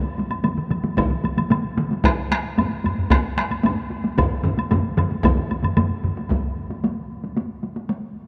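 Recorded in a vast, echoing space with a wet, cathedral-like reverb that lingers for about 5.2 seconds, this short excerpt from a longer Japanese traditional taiko piece sounds ceremonial and powerful. It moves at 113 BPM in a straight 4/4. Four taiko ensembles build the texture: the first enters at 0.2 seconds, up front, struck with hard sticks and carrying a vintage, band-limited tone. A second ensemble follows on heavy sticks with a compressed, saturated punch, also up front, and a third adds hard-stick strikes with a small-room character. By 2.1 seconds a fourth, live-room ensemble on hard sticks joins near the front, while a close, woody woodblock clicks through the opening passage. After about 6.4 seconds the other parts fall away and only the first, band-limited ensemble carries on into the closing section.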